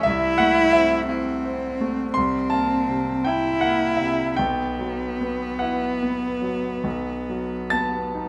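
A single bowed cello carries the melody up front, its warm tone shaped by vibrato, soft attacks and expressive portamento. A bright, brilliant grand piano accompanies it in this elegiac, yearning romantic duo, moving through Am/C, C7, Bsus4 and B5 in a slow, rubato 12/8 at 43-59 BPM in dotted quarters. Close, detailed microphones and light reverb catch the cello's close presence and the piano's natural sound across this 8.3-second passage cut from a longer piece.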